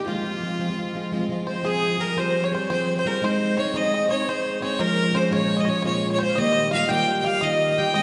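Spirited and driving, this Celtic slip jig in F minor moves at 114 BPM in a straight 9/8, and it is cut from a longer piece. A single bowed fiddle carries the melody up front, its biting, intense tone colored by light vibrato. Behind it, a fingerpicked bluegrass banjo adds a twangy, percussive second line, while a musette accordion contributes a reedy, shimmering, dark counterline that sits smooth and low in the mix. A picked, plugged-in swing-style acoustic guitar, boxy and warm, stands up front with the accompaniment, outlining a progression that opens on Fm and shifts at 1.7 seconds into a new section moving through Fmadd9, Ab, Bbm7 and Ebadd9. A long, wet church reverb surrounds the players, giving the sound the airy sense of a large hall with its highs gently rolled off.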